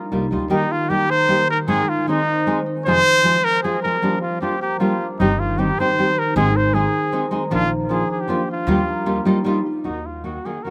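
A mellow solo trumpet leads this dramatic, passionate mariachi excerpt, singing its melody up front in a classical style with a soft attack and light vibrato. Beneath it, a dark, full-bodied nylon-string guitar is fingerpicked as accompaniment, also up front and carrying a slapback echo. A concert harp adds ringing fingerpicked arpeggios throughout. A woody pizzicato upright bass with steel strings sounds briefly at the start, then returns at 5.2 seconds and plays until 10.4 seconds. In Eb major at 154 BPM in a straight 3/4, the harmony moves through Eb, Ab, Fm, Gm7 and Bb before settling on Ebadd9 and closing on Ebm. The recording was made outdoors and sounds dry, with little reverb.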